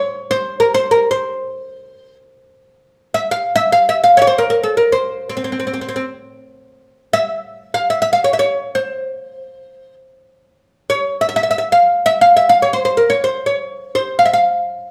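Unfolding in free time, this short passage from a longer piece in Turkish makam style sits in C makam hicaz, tuned to A4 = 441 Hz. A lone oud carries everything from 0.0 to 14.9 seconds, plucked with a plectrum across its fretless neck and ranging from C4 to F5. Its double strings give the tone a woody, deep resonance, and the instrument sits up front in the sound. The material is laid out as one phrase heard twice, with the repeat arriving at 6.8 seconds, which lends the moment a composed, dignified character. A moderate large-studio reverb surrounds the oud with a sense of a real room, as though captured live, and the mood stays warm and stately throughout.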